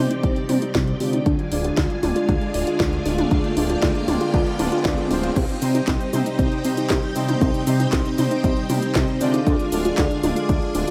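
A straight 4/4 pulse at 117 BPM drives this melodramatic, nostalgic Italo disco fragment in C minor, where a punchy overdriven electronic kick and an overdriven house kit with cracking snare, bright hats, handclaps, cabasa, toms and crash pair with a fat detuned analog bass, bold chorused synth brass stabs with delay, lush vintage string-machine chords through ensemble chorus, and very quiet warbling lo-fi pluck arpeggios, while a faint riser runs until 5.4 s alongside a filter sweep on an analog polysynth, all in light digital ambience as Cm moves to Ddim.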